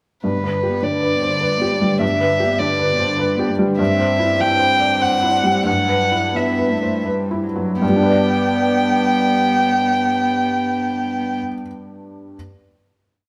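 In a rubato 3/4 that drifts between 79 and 102 BPM and slows from 2.9 to 7.8 seconds, this short, hopeful and tender neoclassical piece in G major sets a close, intimate violin melody, played sul tasto with light vibrato and an airy bow, over a cello second line that moves in flowing broken chords and answers at phrase ends. A felt-muted upright piano sits up front with mellow, rocking broken chords and audible action noise, and it rings on alone after the strings stop at 11.4 seconds. The players share one stone room whose wet reverb surrounds the gentle playing.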